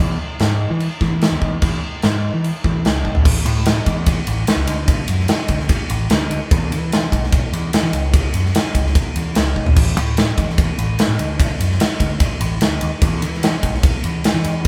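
Sunny and swaggering, this classic rock excerpt moves at a straight, driving pace in 4/4, its two parts captured as a band playing live together in one room with a moderate studio reverb. A bright, growling picked electric bass with overdrive opens alone at 0.0 seconds, and a big, up-front acoustic drum kit with a punchy kick, medium-tuned snare, toms, ride and crash cymbals joins at 0.4 seconds. Drum fills at 3.0 and 9.6 seconds punctuate the groove, the first leading into a new section at 3.3 seconds.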